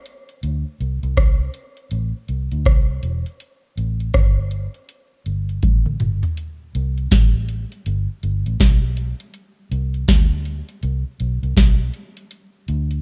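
A booming analog drum machine opens this tender, romantic lovers rock reggae cut at 81 BPM in C major, its deep kick, tonal snare, metallic hats, rim clicks and toms sitting up front with a lilting 16th-note swing, joined at 0.4 seconds by a dark, round, foam-muted fingered electric bass that stays punchy and close, while a drum fill from 5.6 to 6.4 seconds leads into the second section, all captured as a rough, dry home demo on cassette tape.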